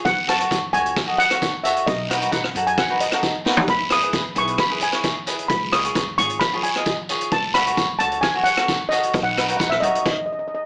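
A straight 4/4 calypso groove at 132 BPM drives this carefree, festive excerpt, cut from a longer piece. A mellow, shimmering steel pan carries the melody, played with soft rubber sticks and bathed in plate reverb, while a crisp, picked cavaquinho supplies bright accompaniment. Underneath, a woody, growly pizzicato upright bass sits low in the mix, and a boomy, mid-forward street-band drum kit with dark cymbals keeps time up front, breaking into a fill at 3.5 seconds. A raspy guiro sounds distant, as if in a large room. The chords move from F#m through B7, Emaj7 and C# before resolving toward B, and a stop arrives at 10.0 seconds, all heard through a small-speaker sound with moderate studio reverb.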